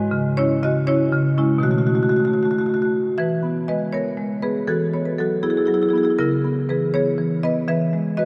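A woody, dark marimba played with medium hard mallets carries this warm, flowing fragment of a contemporary classical solo piece in 6/8, sitting up front yet ringing out into a vast, echoing cathedral-like space as its harmony moves from minor-tinged chords into a brighter second section at 3.2 seconds.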